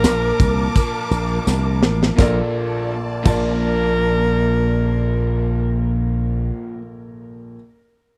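A lightly swung sixteenth-note groove in 4/4 drives this short, glossy and uplifting slice of 1980s-style pop, opening on a Bbmaj7 chord. Up front, a punchy acoustic drum kit with a high-tuned snare, rolled-off top and crash cymbal, hi-hat and kick carries the beat alongside a jingly tambourine in the background, both stopping at 3.5 seconds after a drum fill from 1.5 to 2.2 seconds. A growly slap bass with an envelope filter sits prominently in the low end, while a bright, double-tracked overdriven electric guitar with subtle chorus adds picked, compressed accompaniment further back. A natural-sounding baby grand piano spans from deep bass to high treble and rings on longest, and a bowed string section supplies sustained chords with vibrato, portamento and a smooth top. Over it all, a bright alto saxophone sings the melody in a pop style with vibrato and tape echo, in a dry, close studio sound.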